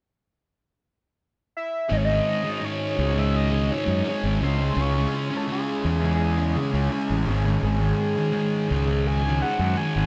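A screaming, guitar-like synth lead opens this dark, trippy rock excerpt at 1.6 seconds, its gritty sawtooth-and-square tone colored by phaser, analog delay, ring modulation and vibrato as it carries the melody between G#4 and G#5. At 1.9 seconds the full band arrives at a straight 84 BPM in 4/4: a thick, double-tracked fuzz guitar plays a picked riff up front, soaked in distortion, phaser and analog delay. Beneath it, a round, overdriven fingered electric bass holds the low end from G#1 to F#2, sitting prominently in the mix. A vintage, buzzy combo organ with light vibrato sustains chords in the background. The harmony moves from G#sus4 to C#m and back to G#sus4, and the echo-heavy mix with light reverb deepens the dark, trippy atmosphere.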